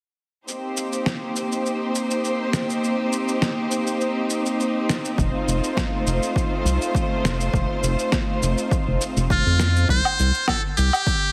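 A lush hall reverb and heavily compressed, radio-like sheen frame this wistful, smooth sunset chillout excerpt in C dorian, moving at 102 BPM in a straight 4/4. A rich, bowed string section holds sustained chords from the start, its light vibrato and even top sitting up front over a gritty, sampler-style kit of electronic cabasa, fat snare and woodblock. At 5.2 seconds a round analog bass with tube saturation and a dark, plucked filter arrives alongside a punchy, overdriven electronic kick, as the harmony shifts from Cm7 to F7. Near the close a muted trumpet takes the solo melody, buzzy and brilliant with scooped notes and a forceful jazz phrasing, colored by vintage 12-bit grit and tape echo. The strings stop at 9.9 seconds as the chord settles on C5, leaving the trumpet, bass and drums to carry the brief final passage.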